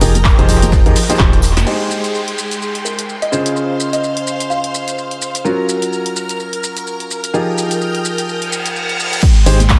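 An echo-heavy mix in a small, lightly reverberant room carries this feel-good, euphoric piano house cut, where a clear, woody upright piano riff sits up front over shimmering, chorused string-machine violins, both pumping with the sidechain alongside a hollow, organ-like FM bass, while a punchy analog drum machine with claps, shaker, hi-hat and crash runs throughout, a dry electronic kick, a very quiet brush kit and background tambourine and congas drop out around a drum fill that begins at 1.2 seconds and return at 9.2, an electronic downlifter and reverse cymbal sweep in from 1.7 seconds, and a plucked kalimba melody rings through the middle.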